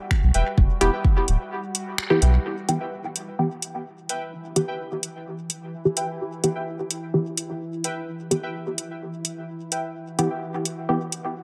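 Dub techno at 128 BPM in E minor, nocturnal and hazy, where a deep, up-front electronic kick drum sounds only until 1.1 s and a round, soft sub bass holds until 2.4 s, while a tape-warm vintage rhythm box carries finger snaps and metallic hi-hats through dub echo, muted sawtooth chord stabs arrive through chorus, phaser and echo, detuned lo-fi synth keys warble nostalgically above, and a resonant, bubbling stepped-filter texture pulses with sidechain pumping, the whole cut sitting in a moderate spring reverb.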